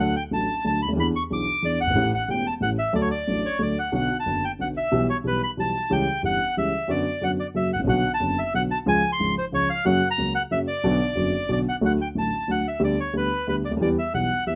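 A reedy bandoneon carries the melody up front, its boxy small-room tone set close in this nostalgic, passionate tango in a rubato 3/4. A dark, mellow concert grand piano accompanies from deep in the bass, also up front. In this short excerpt the music turns to a minor-key passage at 3.9 s before the opening material returns at 11.8 s, all captured with close, detailed microphones and light reverb.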